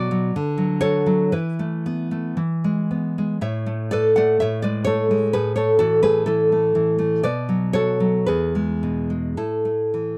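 A dry, close 1970s-style studio sound with light reverb frames this sunny, nostalgic fragment of a romantic piece for classical guitar in A major, where a bright, fingerpicked nylon-string guitar sits up front across its full 10.2 seconds, ranging from E2 to F#5 with audible finger squeak as it moves at a rubato 53-65 BPM in 2/4 through chords such as Bm/D, Esus4, E, Amaj9 and A5.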